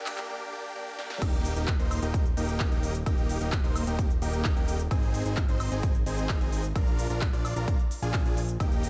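A huge, bright supersaw lead opens this anthemic, euphoric festival progressive house clip at 130 BPM in Eb major, its detuned sawtooth riff pumping against the sidechain and trailed by tape echo. A big-room dance drum kit joins almost at once with crisp hats, a punchy snare, handclaps, cabasa, woodblock and crash cymbal, opening on a drum fill and a short break as the build-up rests on Bb. The drop lands at 1.2 seconds, where a punchy, up-front electronic kick and a fat, nasal analog bass enter together, the saturated bass sitting low and pumping with the sidechain. Underneath, the harmony moves from Eb to Ab and then to Bb, keeping the euphoric lift going. Both drum parts carry a tape-warm, layered sheen with the feel of a large room, while the overall mix stays dry and filtered of its deepest lows. It is cut from a longer piece.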